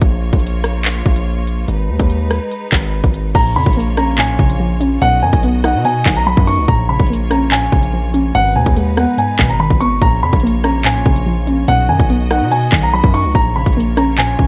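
Dark, warm digital ambience frames this menacing drill excerpt at 144 BPM in a half-time 4/4 feel, set in Bb phrygian with chords moving between Bbm, Abm and B. From the opening second, an electronic drum kit sits up front, its hard-clipped kick, crisp hi-hats, handclaps, rim clicks and crash cymbal carrying the roominess of a large space. Beneath it, a heavy, aggressive 808-style bass with a sine core, a noise layer and a fast, decaying attack growls through its distortion, while a clear symphonic string section holds smooth, bowed ensemble chords with light vibrato. At 3.4 seconds a mellow concert grand piano enters high in its range with a dark, delayed melody, its tone carrying a deep bass weight. At the same moment a warbling, lo-fi pluck joins as accompaniment, its detuned triangle and sawtooth blend, noise layer and filter sweep thickened by chorus.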